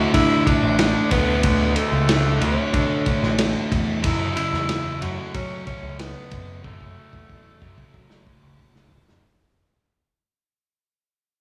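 A raspy, growling tenor saxophone carries the melody up front in this confident, driving classic rock cut at 92 BPM, moving from D to F#m over a biting guitar riff in the background, a very quiet sludgy second guitar, a bright overdriven picked bass, a faint piping tonewheel organ on slow rotary, and a muffled, lo-fi drum kit up front whose fill starts at 6.6 seconds as the whole fragment fades out in a small room.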